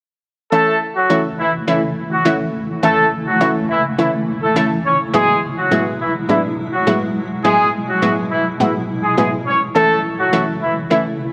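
This euphoric, summery pop excerpt opens at 0.5 s with a clear, punchy horn section carrying the melody over an analog pluck accompaniment, moving at 104 BPM in a straight 4/4 in A major. The horns sound tight and vintage with a light vibrato, sit up front, and trail a delay as they range from E3 to C#5. The pluck is round and detuned, built from sawtooth and square waves with a noise layer, a filter sweep and a moving notch; its fast attack and decaying notes are thickened by chorus and kept forward in the mix. From 1.3 s a granular cloud pad adds sustained chords, cloudy, blurred and evolving, with a slow attack, a long release and its own built-in reverb. The harmony rests on A, shifts to Eadd9 at 5.1 s and returns to A, all set in a lush hall reverb before the fragment ends at 11.3 s.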